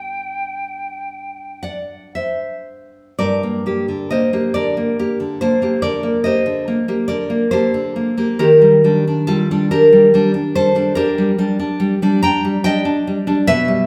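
A tender romantic duo opens in G major, with a pure silver concert flute holding a soft-attack G5 with vibrato over a bright, full-bodied, fingerpicked nylon-string guitar. The flute sits well beneath the guitar in level and is heard only until 1.6 s. The guitar then carries on alone in a slow, rubato 12/8 at roughly 37-50 BPM, its fresh strings and finger squeak close and up front as the harmony turns to G minor at 3.2 s and settles on Ebmaj7 at 8.4 s, all within a wet, large studio reverb that gives the live room a warm glow.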